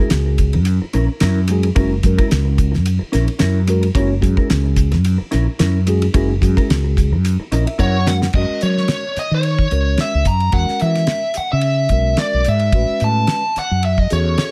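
A lightly swung 4/4 groove from a damped 70s drum kit, with a fat snare, tight kick and dark cymbals, sits up front beside a round, dark fretless bass, setting a bright, slick electric jazz fusion mood in this cut from a longer piece. A mellow tine electric piano with phaser carries the accompaniment throughout, while a clean, compressed electric guitar with analog chorus adds stabs until 8.3 seconds, as piano and drum fills lead into a new section. From 7.8 seconds a bluesy, distorted lead guitar, warm and picked, takes the melody over chords moving from F# through Eadd9 to Amaj9, all within a studio ambience.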